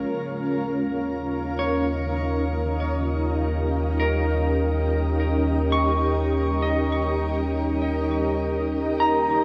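A cloudy, detuned granular pad holds a sustained D#7 chord up front over a deep, round sub bass, opening this serene ambient passage at a slow 50 BPM in 4/4. At 1.6 seconds a clean, picked electric guitar enters with high arpeggios, colored by spring reverb and delay. A shimmer reverb with a long tail bathes the warm, blurred sound of this fragment cut from a longer piece.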